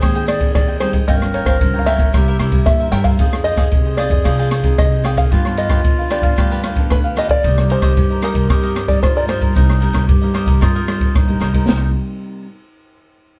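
Heard from further back in a small, wet room, this lively, yearning samba and choro cut moves at 113 BPM in C minor. A plunky, fingerpicked open-back banjo carries the melody in plate reverb until 11.1 s, while a clear, classical-style clarinet plays a second line, and crisp picked cavaquinho and classical fingerpicked nylon-string guitar fill out the harmony over Abmaj7, Gm7b5, C7, Fm7 and G7 before settling on Cm7, with the guitar sounding last to 12.5 s. A woody, thumpy pizzicato upright bass sits in the background, and an up-front open jazz kit with dark cymbals, boomy kick, rim clicks and a medium-tuned snare drives the straight 4/4 feel.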